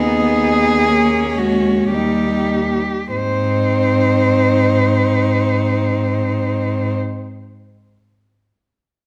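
A moderate recital-hall reverb, lasting about 1.4 seconds, surrounds this brief, yearning and solemn passage for four bowed cellos, cut from a longer classical piece. It moves in a rubato 3/4 at 48-67 BPM and slows through its opening phrase up to 3.1 seconds, when a new section begins. A rich, expressive single cello sits up front and carries the melody with vibrato, a soft attack and gliding portamento. Beneath it, a clear, focused cello plays a close second line, and another cello gives smooth, even accompaniment, both with vibrato. A warm, up-front bass cello grounds the harmony with a smooth top, as the chords move from G#m over D# to D# and settle on G# major.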